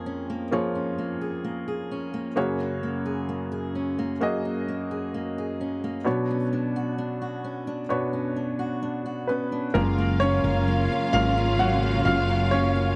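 A dry, close recording with a 1970s studio character frames this short, emotional and hopeful pop passage in F# major, moving at a slow 65 BPM in a straight 4/4. A clear upright piano with audible action noise and fingerpicked steel-string acoustic guitar arpeggios, complete with finger squeak, carry the opening over chords drifting from A#m7/E# through F#add9 to Bmadd9. Near 9.7 s a growly, punchy fretless electric bass and a lush background string section with portamento arrive, a smooth violin section adds a second line at 9.8 s, and the piano takes a solo over F#maj7.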